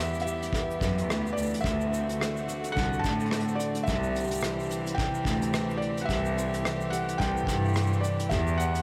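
Folktronica with a warm, pastoral mood and a gently swung feel, heard as a short cut from a longer piece, steeped in a dreamy cathedral reverb. A felt-muted upright piano carries the melody in a soft, mellow voice with audible action noise and analog delay, over a fingerpicked plugged-in steel-string acoustic guitar playing arpeggios through chorus and delay, and a string quartet holding sustained chords sul tasto with an airy bow, both set in the background. A dark, rolled-off brush kit of hi-hat, rim click and shaker plays throughout, a tight kick enters at 0.5 seconds, and a nasal, boxy bowed cello with vibrato follows at 0.8 seconds, sitting up front as the bass, as the chords move from Em through D7 and C to Am7/C.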